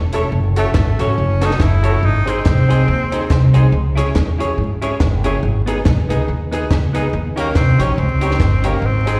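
A swung ska groove at 141 BPM in 4/4 drives this mischievous, energetic fragment, cut from a longer piece and heard as a live gig through a venue's PA with recital-hall reverb and a layer of vinyl crackle. Up front, a compact cocktail drum kit gives a dry, high-tuned snare, punchy kick and hi-hat, while a growly, woody upright bass with steel strings plays pizzicato beneath it. A dark, clean semi-hollow electric guitar comps with a vibrato effect and slapback echo, and a clear upright piano, its action noise audible, adds stabs carrying the same echo. A breathy tenor saxophone sings the melody in soft, whispered, scooped phrases from 0.6 to 3.6 seconds and returns at 7.4 seconds, with a very quiet, hollow group handclap tucked close behind. The chords move from F#m through G#, C#m and G#m to D#7.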